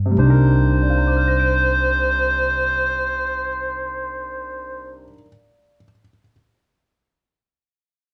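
The recording has a dark, warm production, with a moderate club reverb lending the room a short, natural glow. It is a moody, swinging jazz fragment in the small-group swing and bop tradition, cut from a longer piece and resting on a single Cm7 chord. The upright bass opens the passage, its woody, thumpy pizzicato on gut strings sitting up front. The alto saxophone enters at 0.2 seconds with the solo melody, played in a mellow subtone with light vibrato and a soft attack. A clear concert grand piano supplies the accompaniment across a broad range, its polished, intimate tone carrying deep bass, long sustain and audible action noise. Bass and saxophone stop at 5.1 seconds, leaving the piano to ring on by itself until 6.3 seconds.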